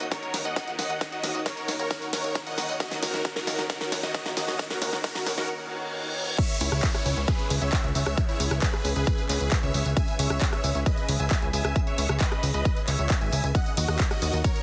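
A huge, detuned supersaw lead carries the melody in this euphoric, driving uplifting trance excerpt at 134 BPM in C# dorian, treated with phaser, delay and sidechain pumping over a thick, chorused unison pad that sits in the background. A plucky, funky analog bass with tube saturation and a punchy, up-front electronic kick anchor the groove, while a big-room dance kit with a huge snare, claps, hats, ride and tambourine runs a drum fill through the build-up before a reverse cymbal at 5.5 seconds leads into the drop at 6.4 seconds. A very quiet riser and downlifter add motion until 10.0 seconds, and the whole mix has a heavily compressed, radio-like sound with light digital reverb.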